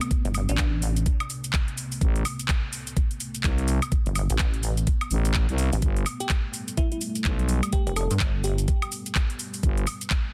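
Dense, heavily limited and set in a digital ambience, this swaggering, gritty bass house excerpt at 126 BPM in A minor swings its 16ths over Amadd9 moving to Gadd9 at 5.8 seconds, with a knocking, up-front electronic kick and a tape-warm house kit of handclaps, metallic hi-hats, shaker and woodblock underpinning a pulsing, detuned, saturated pluck wobble bass and a growling, thick FM bass that enters at 2.0 seconds, both pumping with sidechain, while a bright, evolving sawtooth pad sustains chords in the background and a sparkling, bell-like FM electric piano with chorus, phaser and tape echo returns at 6.2 seconds.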